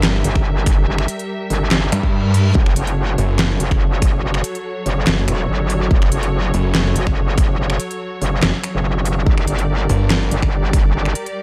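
Heavy wobble dubstep at 143 BPM in a half-time feel, this menacing F# phrygian passage cut from a longer piece pairs a snarling distorted saw bass and a metallic, chorused wobble bass with a punchy overdriven electronic kick and a dubstep kit of deep snare, crisp hats, handclaps and finger snaps, while a clear symphonic string section holds sidechain-pumped, low-pass-filtered chords over Gm and F#m, a brief reverse cymbal enters at 2.0 seconds, and a faint mains hum sits under the dark production.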